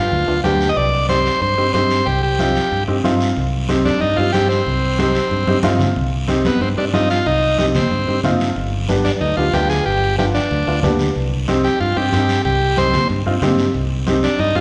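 Cumbia excerpt with a danceable, driving feel, where an up-front, buzzy vintage combo organ carries the melody over warm, direct fingered electric bass, a woody, slightly detuned upright piano with audible action noise, raspy band-limited guiro and low-tuned, ringing congas sitting in the background, all bathed in the reverb of a recital hall, with a drum fill at 5.5 seconds leading into the repeat of the section and the harmony moving between G7 and C minor.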